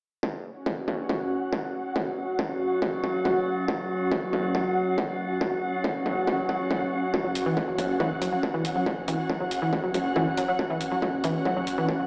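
Driving peak-time techno at 139 BPM in a straight 4/4, this hypnotic excerpt is cut from a longer piece and tuned slightly flat to A4 = 438 Hz. A distorted, up-front electronic kick arrives at 0.2 s in a small room ambience, quickly joined by an ethereal, airy pad of detuned unison sawtooth and triangle tones that sits forward in the mix with ensemble chorus, reverb and sidechain pumping. Beneath it, an eerie, warbling FM drone with a metallic, inharmonic character settles in with a slow attack, colored by chorus, phaser and pumping. From 7.1 s a tight, driving sequenced synth riff takes the front, its detuned sawtooth filter pluck roughened by overdrive, 12-bit sampler grit and tape echo, while a deep, thick sub bass holds F#1 low in the background and metallic electronic hi-hats join the groove. The whole mix sits in a lush hall reverb and sounds as if played on a big sound system in a bare stone room, filtered through a lo-fi AM radio tone.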